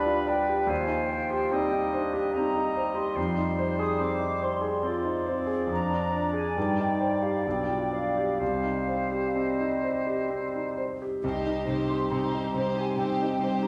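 Classical romantic movement for piano and orchestra in C minor, cut from a longer piece, moving in a rubato 3/4 at roughly 60-73 BPM with a tragic, passionate mood. An up-front, smooth concert grand piano with a deep bass carries the melody throughout, over a bright solo oboe, a clear background clarinet, a hollow, airy flute group and a punchy, close-miked bassoon, all set in a reverberant recital hall. Once the oboe, clarinet and bassoon stop near 10.9 seconds, distant, lush violins, a very quiet viola section, mellow background French horns holding sustained chords and a rich cello bass on C3 enter at 11.2 seconds.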